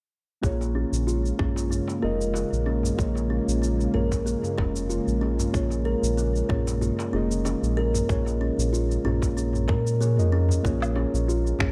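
This excerpt from a longer organic downtempo piece moves at 94 BPM in 4/4, with a light swing on the sixteenths carried by a tight, overdriven electronic kick and a gritty, sampler-style layer of shaker, woodblock and finger snaps, joined at 0.6 seconds by a crisp, deep metal-shell darbuka sitting in the background. The mood is meditative and earthy, rooted in Bb minor pentatonic and opening on a Bbm7 chord. A round, up-front analog bass anchors the low end with sidechain pumping and a filter sweep that runs until 10.6 seconds. Above it, a woody, ringing kalimba plays arpeggios through a low-pass filter and digital delay, while muted, felt-like synth keys supply intimate accompaniment with chorus, pumping, filtering and delay. A smooth, warbling vintage pad holds sustained chords underneath until 10.6 seconds, when the music moves into a brief new section. The production is dark, with light reverb.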